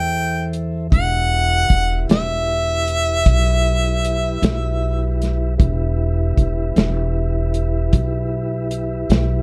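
A jazz-style harmonica solo, up front with light vibrato, tongue slaps and scooped notes, carries the melody until 5.2 seconds in this smoky, mournful slow blues in 12/8. It sits over soft, flute-like tonewheel organ chords turning through a slow rotary speaker and a woody, thumpy pizzicato upright bass, while a dry, dark soul drum kit with a tight kick and medium-tuned snare joins at 0.5 seconds, all in a dark, warm production with light reverb.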